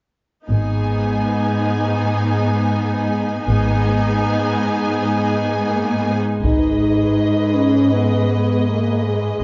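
Relentless and heroic, this fragment of an epic orchestral film score holds steady in 4/4 with a straight feel over a single minor chord. Bowed string sections open together, with up-front cellos and expressive double basses anchoring the low end beneath smooth violas and an intense, distant violin line with vibrato. A mellow French horn section enters at 5.7 s with sustained chords, and at 6.4 s a lush violin melody joins, set back in the mix. A close taiko ensemble struck with hard sticks plays through the start of that second passage until 7.9 s. The moderate reverb of a scoring stage surrounds the orchestra, and a dark, rolled-off top end lends the recording a cinematic weight.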